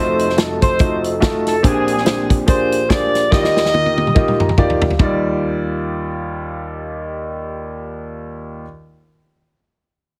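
A smooth-topped horn section carries the melody in a jazz style from the very start, stated up front as an ensemble until 4.6 seconds. This short uptempo gospel excerpt runs at 143 BPM in Eb major with a swung eighth-note feel, and its mood is uplifting and soulful. A warm grand piano accompanies throughout, moving through F7b9, Bb13 and Ebmaj9 and adding a fill just before the second section arrives at 5.0 seconds, then carrying on past it. An acoustic country drum kit with a punchy kick, a medium-tuned snare, hi-hat and toms sits natural and close, playing a fill that leads into that change. Light reverb and a small room ambience surround the parts, while the overall sound is heavily compressed, like a radio broadcast.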